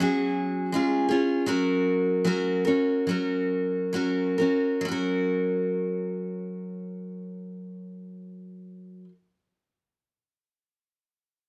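Pastoral and nostalgic, this short folk excerpt features a lone picked steel-string acoustic guitar, up front with a woody, old-strings character and an auditorium quality, playing accompaniment in a straight 4/4 feel that slows down over its first 4.8 seconds as it moves from a suspended chord to a resolution on F#, all captured with close, detailed microphones and light reverb.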